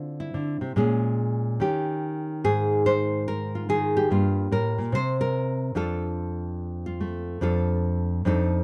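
A fingerpicked nylon-string guitar carries this brief, relaxed solo jazz passage on its own, its classical-toned voice sitting up front with audible finger squeaks. The swung 4/4 moves at 144 BPM through sophisticated harmony, from Dm9 through Bbm7, Eb7, Ab69 and Gm7, reaching a chordless moment near 4.9 seconds before settling on F6. Close, detailed miking with little reverb keeps the sound dry and intimate across the 8.6-second cut from a longer piece.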